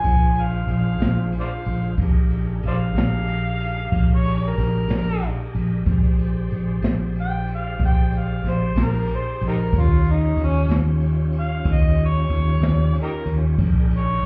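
A gritty, overdriven harmonica solos with vibrato, tongue slaps and scooped notes over a full tonewheel organ on slow rotary speaker, a round, foam-muted electric bass up front and a brushed jazz kit with dark cymbals and a boomy kick, making a laid-back, swaggering slow blues in 12/8 at 62 BPM that moves from Bb13 to Eb9 at 9.7 seconds and back at 13.6 seconds, all heard as if muffled through a wall, with a touch of club reverb.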